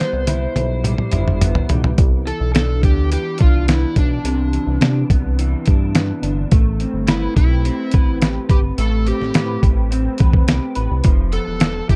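A straight 4/4 groove at 106 BPM opens with a drum fill from the dusty, sampler-style kit, whose gritty, overdriven hits of thumpy kick, fat snare, hi-hat and toms sit up front in this hazy, nostalgic slice of indie bedroom pop in C major. A glossy, retro synth bass with pulse-width movement and chorus enters at 0.1 seconds, while a slightly broken-up electric guitar through a small old amp picks the accompaniment through analog chorus and vibrato. An overdriven slide guitar carries the melody with subtle chorus over chords moving from Cmaj7 through Cmaj9 and Am9 to Fmaj9#11, all in a dark, dry production with little reverb.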